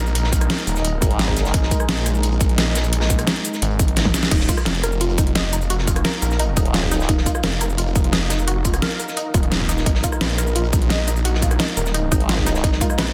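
A snarling, growling distorted saw bass with tube saturation leads this futuristic, tense stretch of dark technical drum and bass at 173 BPM, pumping against a punchy overdriven electronic kick, an up-front dubstep kit with deep snare and metallic hats, and a gritty breakbeat kit set back in the mix with rolled-off top. A deep, moody ambient pad holds sustained chords underneath throughout, while a formant-sweep wobble bass bursts in briefly at 1.0, 6.6 and 12.1 seconds. After a drum fill, a lush unison pluck enters at 4.3 seconds with phaser and dub echo, all inside a dense, heavily limited modern master with light reverb.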